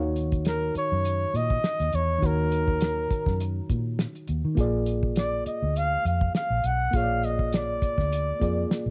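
A warm flugelhorn carries the melody from 0.5 seconds, sitting up front with light vibrato, scooped notes and a pop-style delivery, softened by cassette tape and plate reverb, in this short, smooth, cinematic fragment of lush 1970s-style soul with a gentle swing. Beneath it, a reedy, worn and slightly out-of-tune electric piano plays through its built-in speakers with the same tape and plate treatment, moving from Ebm7 to Bb7 at 4.6 seconds, while a round, foam-muted, amped electric bass and a dry, cloth-damped drum kit with a fat snare, tight kick, hi-hat and rolled-off top hold the groove. The whole piece has the intimate, lightly reverberant character of a home cassette recording.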